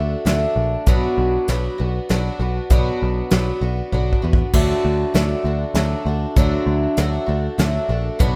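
A shimmering, octave-doubled twelve-string acoustic guitar with a boxy tone and audible finger squeak opens alongside a foam-muted, punchy electric bass over D and Bm chords, joined at 0.3 seconds by a soft brush drum kit with a fat snare that plays a fill at 3.9 seconds, giving this wistful, reflective folk rock and heartland rock excerpt in 3/4 at 98 BPM the light reverb and rough feel of a home demo.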